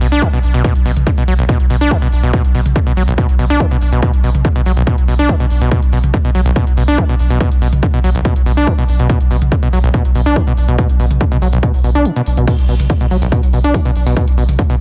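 A digital ambience frames this relentless, driving peak-time techno excerpt at 142 BPM in B minor, where a squelchy, gritty overdriven acid bass riff with delay and sidechain pumping sits up front over a deep, round sub bass held on B1, while a heavy, layered electronic kick enters at 0.2 seconds and briefly drops out at 12.1 seconds alongside a techno drum kit of smooth hi-hats, crash cymbal, tambourine and toms.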